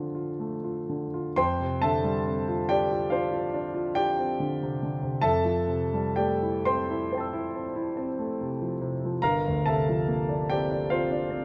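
Impressionist classical solo piano in 9/8 and F major, this dreamy, hazy excerpt drifts with rubato at roughly 40-51 BPM counted in dotted quarters, moving from F6 to F69 and settling on Gm11 at 9.2 s. A clear, natural concert grand sits up front and carries the whole passage, reaching from deep bass notes at G1 to E6. A moderate recital hall reverb and dark, warm production give the sound its soft glow.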